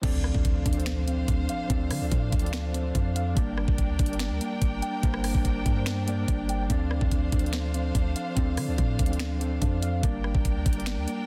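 A dense, heavily limited and nearly dry mix carries this brooding, hard-hitting trap excerpt at 144 BPM in a half-time feel in D minor, where an up-front electronic drum kit with a knocking kick, sharp snare, bright hats, crash cymbal, finger snaps and rim clicks is joined by a deep, boomy 808-style bass beneath a mellow, clean tine electric piano that adds brief fills at 2.7 and 5.9 seconds, smooth bowed studio strings with vibrato, muted felt-like synth keys warbling through chorus and tape echo in the background, and a very quiet electronic impact at the opening, over chords moving between Dm7 and Gm.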